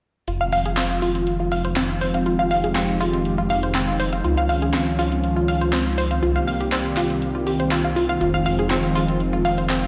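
Progressive house with a dreamy, emotional mood, this short cut from a longer piece moves in a straight 4/4 through Fm7, Dbadd9, Cm7 and back to Fm7. Up front, a vintage analog pad holds sustained chords with a soft attack, long release and a warbling, lush chorus that gives it a smooth glow. Beside it, an analog pluck spins bright, round arpeggios from detuned sawtooth and pulse waves with a wave-folded edge, a filter sweep, chorus and delay. Underneath, a dark detuned saw bass rumbles with a deep, saturated, beating tone, while a layered electronic deep house kit supplies handclaps and hi-hat. A jingly acoustic tambourine sits in the background, and the whole mix plays as if through a big sound system in a bare room, set in a moderate, lush hall reverb with a 2.3-second tail.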